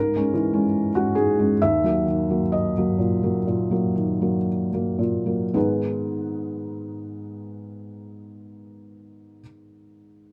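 Wistful and melancholic, this brief fragment of a longer neoclassical minimalist piece features a lone felt-muted upright piano, its soft, intimate tone placed up front in a dark production with light reverb. The rubato playing in 4/4 slows over the opening 5.5 seconds as the harmony moves from C#m to D#m at 1.6 seconds. A second section then settles onto G#m, the piano spanning from D#2 to E5.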